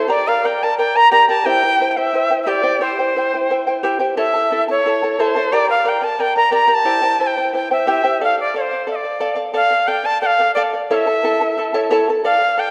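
An airy cane quena, end-blown and reedy with tongued notes and vibrato, carries the melody up front over a fingerpicked charango whose shimmering double strings fill out the accompaniment in this earthy, festive Andean folk fragment in a straight 2/4, both bathed in a lush scoring-stage reverb.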